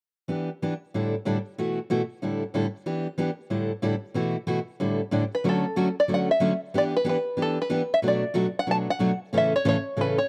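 A twangy, plunky open-back banjo takes the melody up front at 5.3 seconds, fingerpicked high over a bright, picked steel-string acoustic guitar that has carried the accompaniment alone since 0.3 seconds. This charming, playful jazz excerpt swings briskly at 186 BPM in D major, its opening section circling through Em7, A7sus4 and B7sus4 before the second section settles onto Dmaj7, Em7, Bm7 and A. The sound is dry and close, like a 1970s studio recording.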